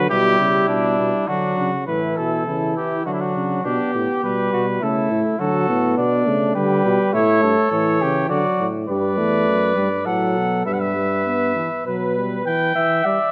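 A mellow trumpet carries the melody from the first moment, joined at once by a flugelhorn's light-vibrato second line, a close-miked euphonium accompaniment and a vintage-toned bass trombone, opening this solemn classical canzona for brass ensemble at 102 BPM in 3/4. The imitative writing moves from G major into E minor at 8.9 s, with the bass trombone dropping out at 12.4 s before the passage settles on an E minor chord at 12.5 s. A moderate concert hall reverb gives the distant trumpet and flugelhorn a roomy glow, while the close, detailed microphones keep the trumpet up front.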